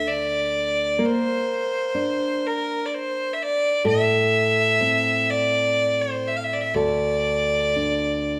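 A single fiddle with a biting, earthy tone and light vibrato carries the melody of this mournful, haunting Celtic slow air in D minor from the first moment, up front beside a thumb-plucked classical nylon-string guitar with fresh strings that accompanies it through Dm, Bb, Am and D5 at a rubato 42 BPM in 6/8, both parts sounding in a moderate recital hall for this brief 8.4-second section cut from a longer piece.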